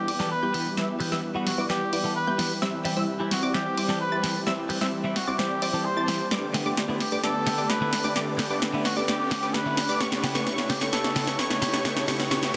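A cup-muted trumpet opens this emotional, anthemic festival progressive house excerpt at 130 BPM with a soft, veiled, jazz-style melody with scooped notes and delay, over a thick, warbling vintage pad with chorus, bright detuned pluck arpeggios colored by phaser and cassette tape, a punchy supersaw stab riff under a filter sweep, and a very quiet detuned saw bass moving through Em, C, Gadd9 and Aadd9. An up-front house drum kit with a layered, clipped snare plays a fill through the whole build-up, while a clean, compressed, direct-recorded electric guitar adds picked accompaniment with phaser and delay. A faint riser enters at 5.9 seconds, and a huge ambient reverb and dense, heavily limited master give the sound a modern sheen.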